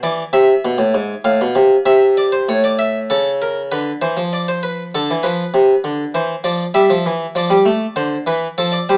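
A lone Italian-style harpsichord opens on an E7 chord and moves through A minor, A major, D minor and C major harmonies in a joyful, lively baroque-style two-part invention at 98 BPM in a straight 4/4. Its single set of strings sounds round, plucked and full, close-miked and placed up front, spanning G#2 to F5, with a fresh idea arriving at 2.5 seconds. A moderate studio reverb and a small-speaker quality frame this short extract from a longer piece.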